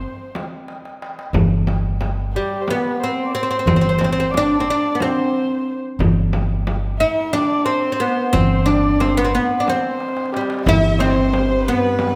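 Turkish makam ensemble music in 7/8 with a straight feel, stately and warm in mood, cut from a longer piece. A bright, fretless oud plucked with a plectrum carries the melody up front, its double strings giving a woody ring, while a dark, boxy kamancheh plays a close, intimate second line with light vibrato, soft attack, portamento and an airy bow. An upright bass holds G1 in thumpy pizzicato on gut strings. A crisp, small metal-shell darbuka, sounding distant in a large room, plays alongside a deep, compressed and saturated frame drum, with drum fills around 0.7 seconds and again just before the closing section. At 10.7 seconds a chamber violin section enters with a reedy, period-style tone as another second line, and a veiled, con sordino cello drones on G2 in the background. The ensemble sits in a wet recital hall reverb.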